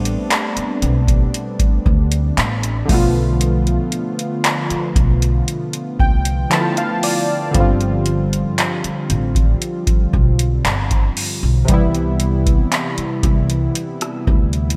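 Detuned, sawtooth-based analog keys and a dark, woody upright bass open this slow contemporary R&B fragment together at 0.0 seconds, setting a late-night, sensual mood at 58 BPM in a straight 4/4. A booming analog drum machine joins a moment later with a deep kick, metallic hi-hats, handclaps and rim clicks, its tape-warm sound sitting up front and bathed in gated reverb. The keys are round with a fast attack and decaying tones, treated with chorus and a filter sweep, and they add a fill between 5.5 and 7.5 seconds. Beneath them the plucked, thumpy steel-string bass stays low while the harmony moves from Am11 through Bm7b5 and G7sus4 to Cmaj7. A light reverb and bright 1980s-style digital production frame this short section cut from a longer piece.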